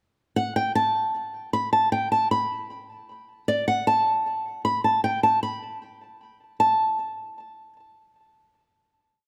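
A fingerpicked flamenco guitar sits up front in this short, complete hip hop piece, playing a looping melody that repeats like a sampled phrase. The mood is eerie and hard-hitting, set at 154 BPM in 4/4 with a half-time feel. The acoustic guitar has a warm tone, and it carries the hook from 0.4 seconds before it stops at 7.7 seconds. A moderate scoring-stage reverb lends the sound some depth, paired with the close feel of a small room. The piece then lets a final note ring out until 9.3 seconds.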